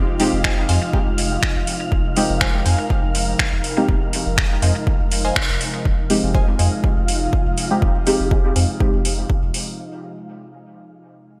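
A swung 4/4 dub techno groove rides a punchy, layered electronic kick and a dry, tape-warm vintage rhythm box of finger snaps and metallic hats, while a round triangle-and-square sub bass and a deep, detuned chord stab with chorus, phaser and dub echo pump under sidechain on an Fm7 in this deep, nocturnal cut from a longer piece. Above them, a breathy, slow-attack pad with chorus and a wind-like tuned noise texture bathed in its own reverb sustain throughout, and a crisp, wave-folded wavetable stab sits in the background trailing dub echo. A band accent lands at 5.4 seconds, and from 5.9 seconds a filter sweep runs across the synth stab, all framed in light reverb and bright 1980s-style digital production.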